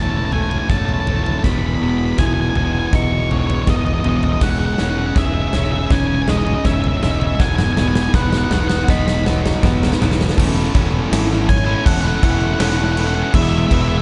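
A bright, double-tracked fuzz guitar riff, a distorted octave-fuzz lead melody with digital delay, and a lo-fi, slightly broken-up arpeggiated guitar through a small old amp with spring reverb open this hopeful, euphoric post-rock passage at 81 BPM in straight 4/4, over a round, overdriven fuzz bass sitting low in the mix. A huge arena drum kit enters at 0.3 s, up front with bright cymbals and a punchy kick, carrying a build-up and drum fill through 10.4 s as the chords move from A/E through Emaj7, C#m/E and B/E, return to A/E, and then arrive on E. The small-room production is dark, with nothing above 10.5 kHz, and the passage is cut from a longer piece.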